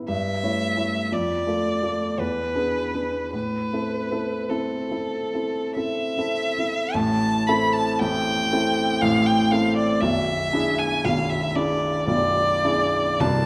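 A baby grand piano opens this excerpt of a yearning, solemn romantic duo in A minor, joined at 0.1 seconds by a single bowed violin carrying the melody with a smooth, even tone and vibrato. Moving slowly in 3/4 at around 45-60 BPM with a free rubato feel, the piano's intimate accompaniment, its action noise audible, sits up front beside the violin over harmonies that pass through E7 to A minor. A wet recital hall reverb surrounds both instruments as the opening phrase returns at 6.9 seconds and is cut off at 13.5 seconds.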